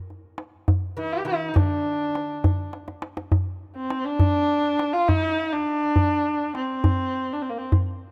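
Persian modal ensemble music in 6/8, hypnotic and longing, with a tight, dry tombak played up front with soft hands, a single bowed kamancheh carrying a smooth, even melody rich in vibrato and portamento from 1.0 s, and a delicate fingerpicked lute with double gut strings adding a quiet second line until 2.7 s, when a drum fill leads into the next section of this rough home demo, set in a small room with light reverb and cut from a longer piece.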